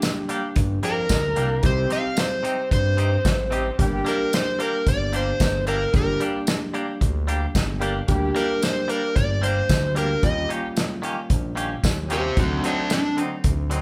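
Straight-eighth 4/4 at 112 BPM with a light sixteenth swing, this smoky, mournful soul blues excerpt in G minor opens on a punchy, rolled-off drum kit with tambourine, a reedy, lightly overdriven electric piano shimmering with fast tremolo, and a dark horn section holding sustained chords with light vibrato in the background. Twangy clean guitar stabs with tremolo arrive at 0.3 s, a smooth synth bass enters at 0.6 s, and an up-front overdriven slide guitar carries the melody from 0.8 s over changes moving from Gm to D7b9, all played live in a large studio room.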